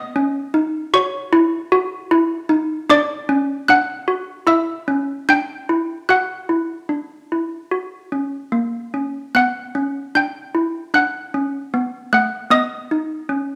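Classical tune for handbells, solemn and wintry, moving at a steady 76 BPM in a straight 4/4 and tuned slightly high to A4 = 441 Hz. Malleted handbells play alone across the 13.6 seconds of this passage from a longer piece, spanning A3 to G6 with a bright, damped tone from hard clappers. Chords shift from a rootless Badd9 through Dmaj7/C#, C#dim, Dadd9, F# and Bm before returning to Badd9 at 12.5 seconds. The bells sit up front under close, detailed microphones, with a moderate recital hall reverb around them.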